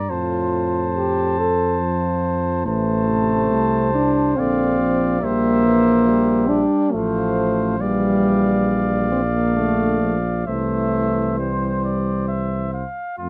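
Two trumpets, one mellow and vintage-toned carrying the melody and the other warm on a second line, open this stately classical brass quintet passage alongside an up-front, soft-attacked tuba bass, while a smooth-topped French horn and a distant, roomy trombone with light vibrato join as accompaniment at 0.1 seconds, all moving in a rubato triple metre from F through Bb and C7/Bb to a closing C chord under light reverb in a dark production.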